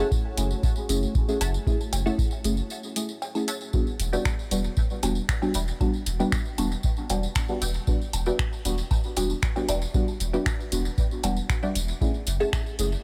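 A soft, wave-folded deep chord stab, smeared with chorus, phaser and dub echo, leads this deep, hypnotic dub techno excerpt at 116 BPM in E dorian, moving from F#m7 to Em7 at 3.7 s over a round triangle-and-square sub bass and a dry analog kick that sit up front. A muted, detuned filtered stab rides a filter sweep through the opening, and a moody, slow-attack ambient pad lingers until 3.7 s. Tape-warm finger snaps and hi-hat trail dub echoes, joined by a jingly, close tambourine and a small-room woodblock and cowbell that pump quietly in the background, all inside a digital ambience.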